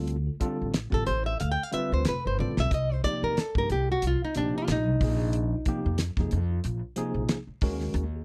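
Over a swung sixteenth-note groove from a damped 1970s drum kit with a fat snare, a tight kick and a brief fill, this funky, nocturnal electric jazz fusion excerpt pairs a woody, thumpy pizzicato upright bass with a worn, slightly out-of-tune tine electric piano, lightly overdriven with subtle chorus, comping through Dm7, Cm7 and Bb9sus4 to Ebm7, while a boxy, fingerpicked flamenco guitar with audible finger squeak and slapback echo carries the melody from 0.9 to 6.0 seconds, all captured in a dry, close 1970s-style studio sound.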